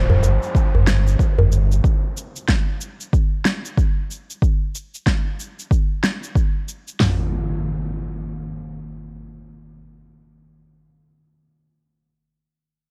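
Organic downtempo with a meditative, earthy mood: a fingerpicked, ringing kora plays crisp arpeggios in the background through a low-pass filter and tape echo, over a deep, round sine sub bass with tube saturation, a tight, cracking djembe that is close and dry, and an electronic downlifter and impact. A layered electronic shaker and snare drum enters at 0.2 seconds and a punchy, up-front deep house drum kit with a fat snare follows at 0.5 seconds, and together they carry the groove until the downlifter and impact return at 7.0 seconds, all set within a worn, warbling cassette-tape ambience with drifting pitch.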